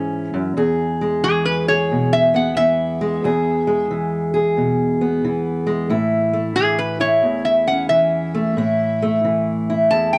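Gritty and swaggering, this acoustic country blues excerpt moves at 90 BPM in a swung 4/4 in E major, opening on a fingerpicked steel-string parlour guitar with a dark, boxy tone that carries the accompaniment from the start, settling on E and moving to A at 5.9 seconds. At 1.2 seconds a metal-body resonator slide guitar, played with fingerpicks, enters with a metallic, nasal melody up front beside the guitar. The sound is a dry, close 1970s-style studio recording in a small room, and the clip is cut from a longer piece.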